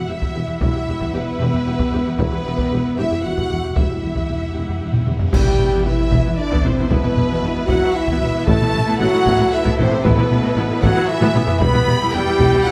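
A roomy scoring-stage reverb surrounds this dramatic, heroic excerpt of epic orchestral film music in E minor, moving at 114 BPM in a straight 3/4. Dark, tight French horns hold sustained chords, joined from 0.6 s by clear trombones with a vintage tinge, while close, dry taiko drums struck with hard sticks drive the pulse. Lush bowed violins carry an expressive, vibrato-rich melody with a soft attack, supported by a second violin line, a smooth viola accompaniment and a sustained string section in the background. Underneath, a very quiet foundation of dark tuba, rich cellos and woody double basses anchors the bass. Between 2.2 and 5.3 s, round, soft-mallet timpani play a fill, and bright cymbals with concert bass drum add weight through 6.3 s. At 5.3 s a full-band accent opens a new section, as the harmony moves from Emadd9 to Em and then to Asus2 before settling back on Em.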